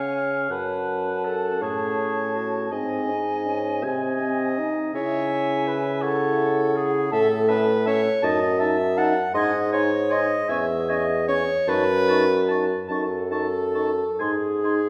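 From the first moment, a slow, solemn classical movement for wind quintet unfolds in six-eight with rubato and a yearning air, its hollow silver flute carrying the melody high above a warm, roomy oboe second line. The clarinet sits up front in the accompaniment beside the dark, smooth-topped bassoon on the bass, while the clear French horn, touched with light vibrato and a soft attack, lies in the background. A reverberant recital hall heard from further back wraps the ensemble in this fragment of a longer piece, which closes on a G# chord at 14.2 seconds.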